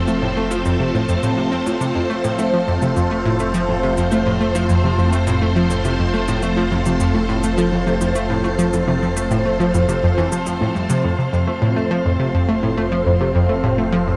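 A bright, up-front analog pluck carries a chorused, delayed riff through this cosmic, expansive stretch of sequencer-driven ambient space music, cut from a longer piece. Above it, a swirling vintage string machine holds sustained chords through ensemble chorus and phaser, while a fat, thick analog bass sits underneath. A very quiet, warbling, lo-fi pluck plays dark arpeggios, and overdriven bongos and cabasa fade in from the background with delay before both stop at 11.0 seconds, all soaked in a long shimmering reverb.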